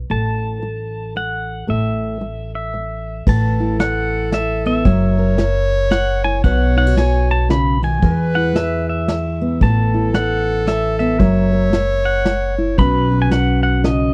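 Fingerpicked steel-string acoustic guitar with audible finger squeak and woody pizzicato upright bass open this gentle, peaceful acoustic folk waltz at 114 BPM with a swung lilt, a twangy, clean pedal steel guitar carrying the high melody with slide and volume swells, before a bright classical-style clarinet and a vintage brush kit with dark cymbals and a tight kick join at 3.3 seconds over Asus2, F#7 and Badd9 chords in a dry, close 1970s-style studio sound.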